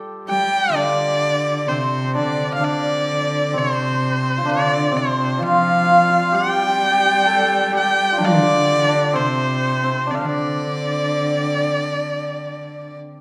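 Graceful and tender, this short passage of Chinese traditional chamber music unfolds at an unhurried 64 BPM in a straight 4/4, set in the D yu mode. A single erhu carries the melody up front and close, its rich, smooth tone shaded with vibrato and gliding portamento. Beneath it, a hammered dulcimer opens the piece at 0.0 seconds and supplies a second line in a shimmering, ringing voice. A lone cello joins at 0.3 seconds with another close, intimate second line, bowed sul tasto with a soft attack, an airy bow and light vibrato. The ensemble sits in a wet recital hall reverb that lends the passage a gentle bloom, and the whole thing reads as a brief section lifted from a longer piece.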